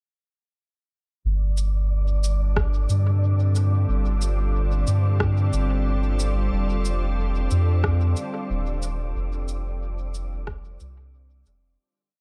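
Meditative and hazy, this short ambient dub piece rests on a deep, round sub bass holding long gliding notes up front from 1.2 seconds, soon joined by an airy, breathy wind-like noise texture on a held high note and a sparse echoing beat of electronic cabasa and rim clicks. A soft organ-like pad with chorus and reverb enters at 2.1 seconds with pure, slowly shifting G5 and F7 chords, a soft, slow electronic kick adds weight, and the echo-heavy digital ambience drifts into a fade-out from 8.3 seconds.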